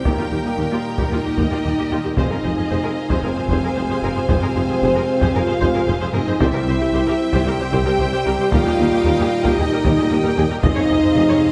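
An epic, heroic orchestral film cue in F minor at 113 BPM opens with the full ensemble at once: a mellow, close-miked French horn section carrying the loudest sustained chords over quiet trombones, a lush string section, and a rich low end of distant double basses, cellos and a roomy tuba, while hard-stick taiko drums pound in the background of a large room. Above them a focused studio violin section sings the melody with vibrato, joined by a bright second violin line, as smooth violas fill the middle. Midway through, round soft-mallet timpani enter at 6.4 seconds and return for a brief fill at 10.6 seconds, all wrapped in the wet reverb of a recital hall, in this section cut from a longer piece.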